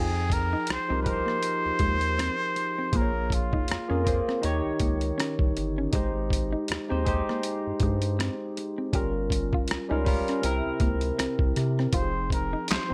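Introspective and soulful, this 80 BPM neo-soul R&B groove in F minor swings lightly on the 16ths, with a gritty, pitched-down boom bap drum kit entering at 0.3 seconds under a barky, lightly overdriven tine electric piano with analog chorus and a round, deep analog bass with a quick filter pluck. A breathy, whispered trumpet with straight mute carries the melody up front with light vibrato, playing until 4.4 seconds and returning at 12.0 seconds, while a dark, fingered clean electric guitar traces a second line in the background. The chords move from Fm9 through Bbm7, Eb7, Abmaj7 and a Gm7b5 to C7 turnaround in this short cut from a longer piece, with plate reverb on the trumpet, guitar and electric piano.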